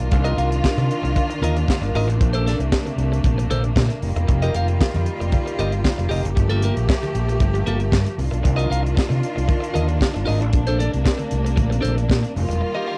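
Sultry and danceable, this short disco cut from a longer piece rides a straight 4/4 feel through rich extended chords like Cm11, Bbmaj9 and F9sus4. Up front, an overdriven fingered electric bass sits punchy and amped alongside a tight funk drum kit with a high-tuned snare, tight kick, hi-hat and handclaps. A clean, picked electric guitar with a compressed, scooped tone supplies the accompaniment, while a lush studio string section holds bowed chords with close, focused vibrato. Very quiet congas with thick, low-tuned skins and soft hands add a subtle layer of percussion from 0.1 seconds. The guitar, strings and drums carry a cassette-tape coloring, and the whole home recording sits in light reverb, lending it an intimate, slightly worn character.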